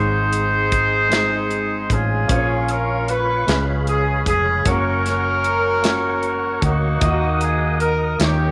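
A roomy horn section carries the melody up front over intimate baby grand piano with audible action noise and a dark, round hollow-body electric bass, as acoustic studio drums with a punchy kick enter at 0.3 seconds and a clean tonewheel organ with key click, chorus vibrato and slow rotary speaker adds sustained chords in the background from 2.3 seconds, giving this brief, uplifting slow gospel excerpt in 6/8 a reverent glow in light small-room reverb.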